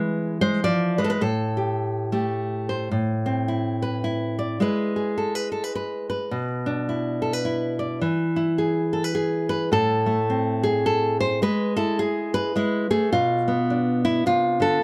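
Folk in a lilting, swung triple metre, this haunting, intimate excerpt features a solo fingerpicked nylon-string guitar, warm and classical in tone with fresh strings and audible finger squeak, sitting up front in light reverb as it moves through three sections built on minor harmony that settle on a diminished chord near the close.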